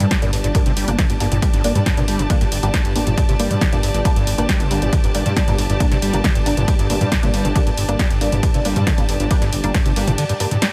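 A punchy analog kick drum sits up front in this dark, relentless slice of driving peak-time techno, running from 0.1 to 9.8 seconds at 137 BPM in a straight 4/4 over a held G minor chord. Beneath it, a deep, rumbling detuned saw bass beats and pumps against the sidechain, while a squelchy, gritty acid bass riff with distortion, subtle chorus and dub echo sits further back, its resonant filter sweeping as the riff moves between G2 and G3. The layered techno kit adds a punchy snare, tape-warm hi-hats, ride cymbal and toms, and a muted, full-bodied dub chord stab with a filter pluck, phaser and echo glints in the background. High above, a distant, lush bowed string section with smooth vibrato spans G4 to A5, also breathing with the sidechain pump. Light reverb and digital ambience give the mix an echo-heavy character in this short section cut from a longer track.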